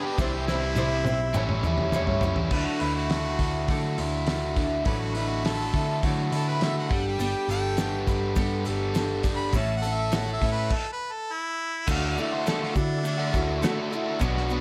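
A jangly, hopeful slice of folk and heartland rock at 103 BPM in D major, with a light reverb over a clear, present harmonica and a bright, picked acoustic archtop (finger squeaks audible) both bathed in plate reverb, while a biting, double-tracked overdriven guitar drives the riff. A cloth-damped, thuddy drum kit with a fat snare, dark cymbals and a gritty, rolled-off top opens with a fill from 0.2 seconds alongside a round, hollow-body short-scale bass, with a grainy egg shaker in the background and a barely audible tonewheel organ holding sustained chords through a slow rotary speaker. The harmonica takes a solo with light vibrato from 2.5 seconds over chords moving from Dadd9 to Gadd9 and A, before a stop at 10.7 seconds gives way to the return of the opening passage.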